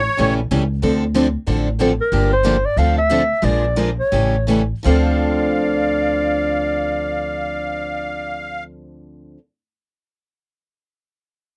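A breathy clarinet carries the melody in this bittersweet, virtuosic excerpt of gypsy jazz in D minor, entering at 2.0 seconds with a mellow, scooped, vibrato-laden subtone sound that sits up front. Swinging in 4/4 at around 159-187 BPM, the piece eases back between 2.1 and 4.9 seconds as the harmony moves through Gm7, Dm9, Bb7 and A7 before settling on Dm7. A woody, thumpy upright bass with gut strings anchors the low end throughout, while a bright picked steel-string acoustic guitar with audible finger squeak provides up-front accompaniment. A second, boxy swing-style guitar picks along further back in the mix. The reedy, shimmering musette accordion offers a brief touch at the very start and returns as a second line from 4.9 to 8.6 seconds, all captured in a dry, close 1970s-style studio sound with light reverb.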